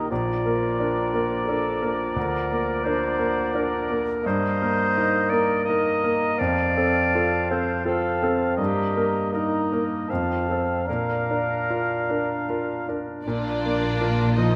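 Set in a flexible triple metre with a rubato feel, this passionate, lush classical passage is cut from a longer piece. A bright concert grand piano carries the melody up front throughout, its brilliant tone reaching down into a deep bass. Until about 12.9 seconds a woodwind group plays alongside it: a clear clarinet on a second line, an oboe with light vibrato sounding distant and roomy, a pure straight-toned flute in the background, and a mellow, vintage-tinged bassoon supplying accompaniment. At 13.2 seconds the colour shifts as the woodwinds give way to a punchy trumpet playing stabs, with bowed cello and double bass sections entering on the bass, the double basses woody with vibrato. Violin sections join at 13.3 seconds, one rich and smooth carrying the melody from a distance, the other taking a second line, while a dark, very quiet viola section fills in the accompaniment. A moderate concert hall reverb surrounds the ensemble, and the harmony moves between a handful of chords before settling back home.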